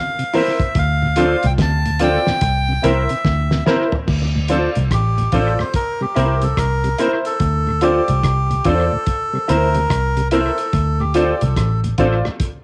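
Laid-back and meditative, this roots reggae piece moves at 72 BPM in D minor with a swung sixteenth feel, rocking between C7 and Dm7 as a reedy, breathy melodica carries the tune through cassette tape, tape echo and plate reverb. A dark, round, foam-muted picked bass sits up front, while a cloth-damped, thuddy drum kit with a fat snare and gritty, saturated tone plays through cassette tape and analog delay. A mellow tonewheel organ with key click and slow rotary speaker, a clean chorused electric guitar and an intimate grand piano stabbing with audible action noise fill the middle, and after a drum fill at 3.2 seconds the melodica takes a solo from 4.1 seconds, captured as a home cassette recording with moderate studio ambience.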